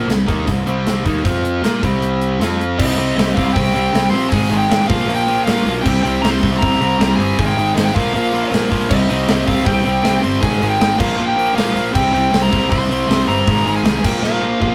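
An up-front, overdriven semi-hollow guitar leads this aggressive, heavy hard rock excerpt in C minor, its picked hollow-body riff joined by a scooped, high-gain distorted guitar on the same riff. The tempo is 157 BPM in a straight 4/4, anchored by a punchy fuzz bass and a gated 80s drum kit with a tight kick, a medium-tuned snare and bright cymbals in a polished stone-room sound. At 2.8 seconds a dark, smooth lead guitar carries the melody in a high register, while a very quiet octave-fuzz lead guitar plays a second line beneath it. The harmony moves through Cm, Ab5, Bb5 and C5 power chords, and a drum fill at 14.2 seconds closes the cut. It has the rough feel of a rehearsal-room recording with a moderate booth ambience.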